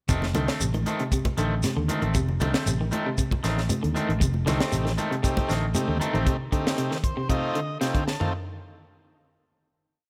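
A hypnotic, funky afrobeat groove in F mixolydian at 116 BPM opens on an F7 chord. It has a dry, tight funk kit up front, a round, syncopated fingered bass riff, and two slightly broken-up, twangy electric guitars: one picks an arpeggiated ostinato through spring reverb, and the other strums upper chord shapes in stabs. A grainy shekere plays close and dry, while close, ringing congas sit in the background. At 4.5 seconds a buzzy, overdriven combo organ enters with syncopated rootless chord stabs and light vibrato, and once the bass, stabbing guitar and hand percussion fall away it plays a fill from 6.8 seconds, while the arpeggio guitar and drums carry on to the close with a drum fill at 8.1 seconds.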